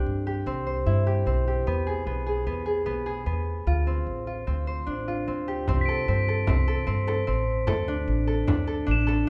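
An urgent, restless mood drives this short piece of contemporary chamber music, cut from a longer work and set in an uneven 5/4 meter with a straight feel. A concert harp plays mellow, fingerpicked arpeggios up front throughout, joined from the opening by a woody, thumpy pizzicato upright bass strung with steel. The harmony moves from Cadd9 through E and Dm7 before the second section turns to a bare C5 and then Dsus2. At 5.7 seconds a frame drum enters in the background, struck with soft hands and carrying a small-room warmth. A moment later, at 5.8 seconds, high crotales played with hard rubber mallets add a soft, bell-like shimmer that rings above the strings, all set in a moderate recital hall reverb.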